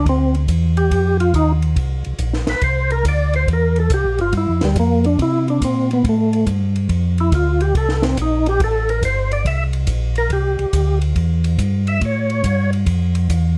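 Soulful and greasy, this soul jazz organ trio swings at 141 BPM in 4/4, with a swung lilt on the eighth notes and a dark, warm production wrapped in light reverb. A percussive tonewheel organ carries the melody as a solo, its fat, lightly overdriven voice sharpened by key click and second-harmonic percussion, with chorus vibrato and a slow rotary speaker giving it a gentle shimmer. Beneath it, a second tonewheel organ holds down the bass line, round and clean with its own chorus vibrato and slow rotary, sitting up front in the mix. A compact cocktail drum kit plays hi-hat, ride cymbal, punchy kick and a high-tuned snare, its smooth, rolled-off top suggesting a small room. The harmony moves from Cadd9 through C9, Bbadd9 and Fadd9 before turning to Em and A7. The melody organ drops out at 12.7 seconds while the bass organ carries on to the end of this excerpt at 13.6 seconds.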